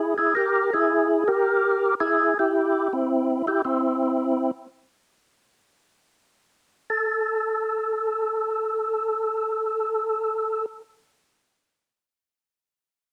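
Dry and close, this short outdoor-recorded jazz excerpt swings at 110 BPM in a greasy, bluesy mood, carried by a lone percussive tonewheel organ, fat and lightly overdriven with key click and second-harmonic percussion, colored by slow rotary speaker, chorus vibrato and slapback echo, and sitting up front over a C7 chord until the harmony drops away at 4.7 seconds while the organ plays on to 10.7 seconds.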